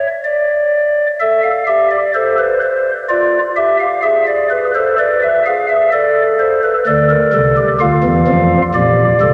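Classical music in a baroque style, this short fragment of a longer three-part fugue sets a driving, serious mood in triple metre. A single pipe organ plays alone from 0.0 to 9.3 s on a stopped flute register, sitting up front with a soft, hollow tone and a chiff at the start of its notes. Its lines span from Bb1 to F5, and the harmony moves from an unaccompanied opening through Am, Dm/F and E7/G# before settling toward Dm and ending on Gm/Bb. A cathedral reverb with a 5.9 s decay surrounds the organ, and the top end stays mellow, with nothing above 10.8 kHz.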